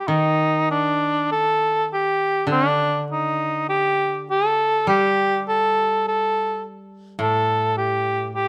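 A mellow cor anglais opens this calm, austere fragment of Japanese traditional chamber music, singing an up-front classical solo line between D4 and A4 with light vibrato. From 0.1 seconds a dry, woody koto, played with fingerpicks, accompanies it low in the mix between A2 and G3. The rubato pace hovers around 48-54 BPM in 4/4, captured by close, detailed microphones with a touch of light reverb.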